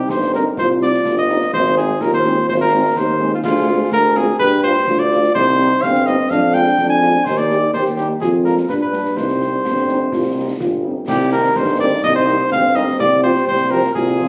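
A mellow cornet leads up front in this stern, resolute military-style march for wind band, cut from a longer piece, in C minor at 126 BPM. It plays over a softly attacked euphonium second line with light vibrato in the background, a clear tuba bass, a tight, very quiet, warm French horn section in accompaniment, and close, dry concert snare and bass drum with dark clash cymbals, while a distant, roomy trombone section adds very quiet sustained chords from 11.3 s, the whole captured on a phone in a large room with moderate reverb.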